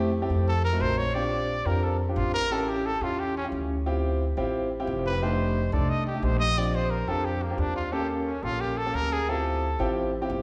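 A present, vibrato-laden trumpet leads a lively, sunny straight-feel jazz solo from 0.5 seconds, over the woody, thumpy pizzicato of a gut-string upright bass and the intimate, vintage comping of a warm concert grand piano with audible action noise, all set in the lush reverb of a recital hall in this fragment of a longer piece.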